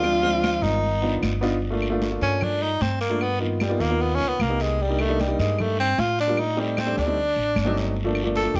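This fiery, sophisticated Afro-Cuban jazz excerpt opens with a breathy tenor saxophone and a dark, whispered trombone in the background, over a vintage-toned grand piano, a thumpy pizzicato upright bass up front, background percussion from damped, high-tuned congas and woody claves, and a raspy guiro. The trombone stops at 1.2 s, and from 1.6 s the saxophone takes a clear solo with vibrato and scooped notes over a straight 4/4 feel and rich chords of minor ninths and altered dominants. Light studio reverb gives the mix a polished sheen.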